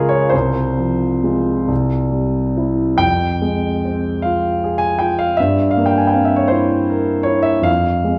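A dark production places a concert grand up front in a recital hall whose reverb lingers for 1.3 seconds, giving the deep bass and long sustain a soft halo. This brief cut from a romantic nocturne in F minor moves in a rubato 12/8 at 43-54 BPM (dotted quarters), with the solo piano spanning C2 to Ab5. Its yearning, melancholic line settles on F minor, shades through C and C7/G, and returns home at 7.7 seconds.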